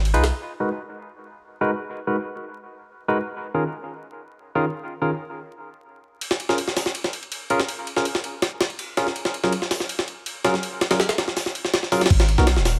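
Nostalgic yet frenetic, this drum and bass cut with a jungle flavor opens on a brief break in which a deep, sine-toned 808-style bass and the drums sound together before falling away at 0.3 seconds. A bright, barky tine electric piano carries the piece with clean, direct stabs, run through a low-pass filter and dub echo, moving through G#m7, D#7sus4, A#m7 and F#maj9 chords. At 6.2 seconds the sampler-style jungle kit returns up front, compressed, pitched up and gritty, with a thumpy kick, a high-tuned snare, hi-hat, ride and crash cymbals, all carrying a tape-warm character. The mellow bass, with its fast attack and long decay, comes back at 12.1 seconds as the harmony lands on G#m. Light reverb and a layer of vinyl crackle lend the whole excerpt a dusty, aged patina.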